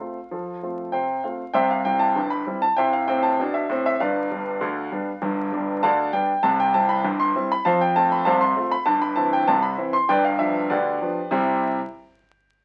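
A clear, intimate concert grand piano plays alone from 0.0 to 11.8 s in this cheerful, jaunty ragtime excerpt, its deep bass, long sustain and audible action noise sitting up front. The tune moves at 98 BPM in a straight 2/4 in C major, with harmony passing from F through C and G7 before settling back on C at 11.3 s. A moderate studio reverb surrounds the playing, and the crackle of a very old 78 rpm record gives the sound an aged character.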